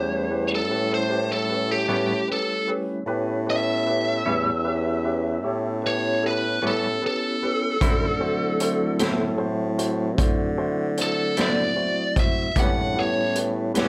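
A lightly reverberant, up-front sound carries this swaggering, soulful slow blues in 12/8 at 51 BPM in A mixolydian, where a biting overdriven lead guitar sings the melody over a background grand piano, a mellow flute-like tonewheel organ on slow rotary speaker, and a warm bassoon with light vibrato holding the bass, while a clean semi-hollow electric guitar with tremolo joins at 1.9 seconds and a gritty, punchy garage drum kit of hi-hat, kick and snare enters at 7.8 seconds as the chords move from A9 to D9.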